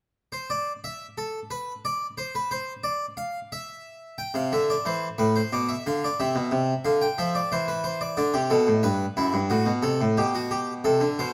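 Elegant and lively, this short excerpt from a longer baroque-style two-part invention in C major at 90 BPM in 3/4 features a solo French-style harpsichord, plucked and full on two sets of strings, sitting up front under close, detailed microphones with light reverb, playing from 0.3 to 11.3 seconds across a range of F#2 to G5 as an unaccompanied opening gives way at 4.2 seconds to a passage moving through C, Bdim, C/E, G, Am69 and G/B.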